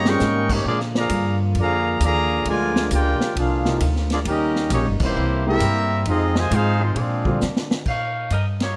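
A joyful, swinging 4/4 groove at 133 BPM drives this big band swing passage, built on a woody, thumpy pizzicato upright bass and a vintage kit with dark cymbals and a punchy kick, all in light reverb. An up-front trumpet section carries the melody over a warm trombone section's second line and a very quiet, mellow trombone section holding chords, while a polished grand piano touches in briefly at the start and returns at 3.7 s. After a drum fill, an edgy saxophone section takes over the melody at 7.9 s, and a band accent lands at 8.5 s.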